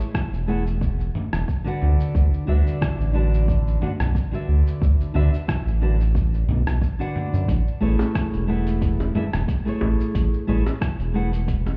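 Sunset chillout with a relaxed, swung feel, this excerpt sets a gritty, compressed sampler-style soul kit of hi-hat, rim click, shaker and toms over a deep, overdriven electronic kick, while a round, dark analog bass with ring-modulated tone sits up front beneath fingerpicked nylon-string guitar, squeaking and washed in digital delay, as tight, high-tuned bongos join at 8.0 seconds, the whole mix heard muffled as if through a wall and bathed in club reverb.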